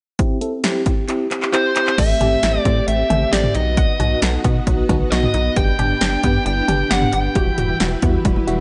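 A moderate recital-hall reverb gives this nocturnal, cool synth-pop fragment a polished, slightly dark sheen, with the top end rolled off softly. At 134 BPM in a straight 4/4, a punchy, tape-warm analog drum machine sits up front with kick, snare, hi-hat, handclaps, cowbell, toms and crash, and a short room on the snare, clap and hats. A warbling FM electric piano with tremolo and phaser opens the track, with a filter sweep across its first two seconds, while a drum fill leads into the fuller section at 2.0 s. A distorted, bluesy lead guitar enters at 1.5 s and carries the melody up front, its picked notes trailed by tape echo. From 2.0 s a rubbery, bouncy square-wave bass anchors the low end, and an organ-like ensemble string pad with chorus rests in the background, while a lush, detuned unison pluck adds very quiet arpeggios. The harmony moves from C through Am7, B and G to Emadd9, and a final drum fill closes the passage.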